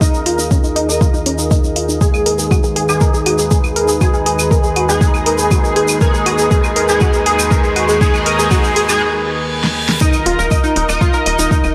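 Melodic techno at 120 BPM, dark and dramatic, cut from a longer piece: an up-front, tape-warm electronic kick, a deep house kit with fat snare, metallic hats and claves, and a grainy tube shaker drive a build-up where filter sweeps open a round, detuned analog pluck arpeggio, edgy nasal sync-sweep polysynth stabs and a smooth, wave-folded pad on Ebsus2 and Abm/Eb, all pumping against the kick under chorus, with tape echo trailing the pluck and stabs, while a lo-fi, warbling square-wave pad lingers in the background until 9.0 s, a very quiet riser and reverse cymbal lead through a break and drum fill, an impact marks the drop at 10.0 s, and a tight, saturated sequencer bass on Eb1 punches in at 10.3 s, the whole mix washed in a lush hall reverb.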